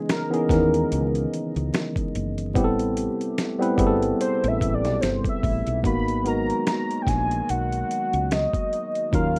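A slow 73 BPM groove in 4/4 with a lazy sixteenth-note swing sets up this smooth, late-night R&B and neo-soul excerpt, carried by a compressed, sampler-style drum kit whose thumpy kick, medium-tuned snare and hi-hat sit up front with a gritty, dusty edge from 0.1 seconds. A woody fretless electric bass joins at 0.5 seconds, round and punchy with a dark, hollow-body tone low in the register. A worn, slightly out-of-tune tine electric piano comps clean and direct throughout, while a hollow, flute-like pad with chorus hangs mellow in the background on sustained chords. The velvety synth lead, a blend of sawtooth, triangle and sine with a sub octave, chorus and vibrato, takes a soft solo over the first 5.8 seconds before the passage moves into a new section. The harmony drifts from C#m9 to Am9 and then G#m9, and the whole thing has the feel of a rough home demo, with light reverb and vinyl crackle.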